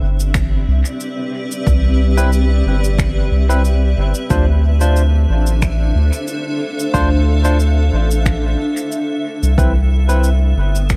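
Hazy and spacious, this short ambient dub excerpt moves at 91 BPM in 4/4 with a light swing on the sixteenths, centred in D dorian. A deep, round, soft sub bass sits up front throughout, its fast attack and sustained tone anchoring the low end. Above it, a cloudy granular pad holds sustained chords, blurred and full-bodied with detuned unison layers, a slow attack, a long release and its own built-in reverb, drifting from Cmaj7 to Dm7 at 4.3 seconds and back to Cmaj7 at 9.6 seconds. An overdriven, punchy electronic kick enters at 0.3 seconds and stays in the background, while dry, airy cabasa and finger snaps carry dub echo. From 2.2 to 10.3 seconds a barky tine electric piano adds bright, clean stabs with dub echo, and vinyl crackle and light reverb colour the whole recording.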